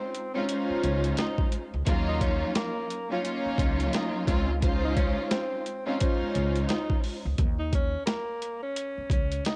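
An overdriven, sampler-style boom-bap drum kit with a thumpy kick and medium-tuned snare sits up front in this gritty, tough hip-hop fragment cut from a longer piece, its swung hi-hats driving the groove under a woody pizzicato upright bass. A dark, lush bowed string section carries the Dbmaj9, Ebm9 and Bbmadd11 harmony until 7.1 seconds, while a breathy tenor saxophone plays a mellow, vintage subtone melody with jazz-style vibrato. The dry, home-made cassette sound carries a faint mains hum.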